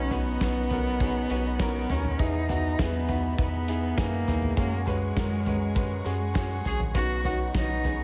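Light reverb and small-room ambience frame this uplifting, anthemic piano-driven pop excerpt in B major at 101 BPM, where a smooth, bowed cello carries the vibrato-rich melody up front with slapback echo over a clear, woody upright piano that shares the same echo, a round, deep analog bass, a loose acoustic indie drum kit with a tight kick and medium-tuned snare entering at 0.1 seconds, a lush, dark string section sustaining chords in the background, and a grainy tube shaker joining at 0.3 seconds.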